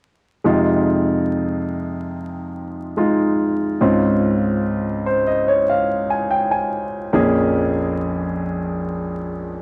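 A bright concert grand piano with deep bass and an up-front, polished presence carries this emotional, melancholic pop fragment, moving through Fm7, Dbmaj7 and Bbm7 chords in a straight four-four. Between 4.6 and 7.1 seconds the piano plays a fill before settling onto the final chord. The recording has a gritty, hardware character, with transformer saturation, vinyl crackle and a modest small-room reverb, and is cut from a longer piece.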